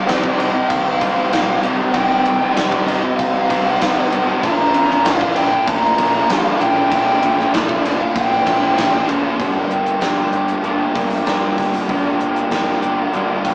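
Dreamy and melancholic, this shoegaze and dream pop fragment layers a dark, fuzzy lead guitar melody that stops at 9.0 seconds over three overdriven, picked rhythm guitars (one hollow-bodied, one double-tracked and very quiet), a round, punchy fuzz bass, a gated 80s drum kit with a punchy kick and airy stone-room sheen, and a very quiet, ethereal pad with octave-up shimmer, all captured in a rough rehearsal-room sound with tube saturation and a small-speaker tone as the chords move from Cm7 to Bb6 and settle on Gm7 at 9.4 seconds.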